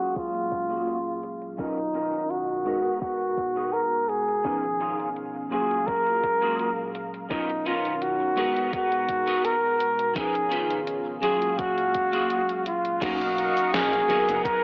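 A straight 4/4 pulse at 84 BPM enters at 0.2 seconds, carried by a thumpy, sampler-style electronic kick and a gated 80s digital drum machine of snare, hi-hat, cabasa and crash cymbal. Both kits are tape-warm and re-recorded in a small room, and the drum machine's snare is bathed in gated reverb. The feel is faded and dreamy vaporwave in F# major, moving through lush chords such as F#maj9, Bmaj9#11, G#m9 and C#9. Up front, a breathy, whispered flugelhorn plays an intimate jazz-style solo line with vibrato and tape echo. Beneath it sit a soft, round FM electric piano with subtle chorus and analog delay, a thick, warbling unison pad, and a bright, twangy electric guitar riff at the edge of break-up with ensemble chorus, with filter sweeps on the pad and guitar until 13.0 seconds. At that point a glossy chorused synth bass slips in low in the background for the closing moments of this cut from a longer piece, all heard through a moderate lush hall reverb and a cassette, low-passed, AM-radio haze.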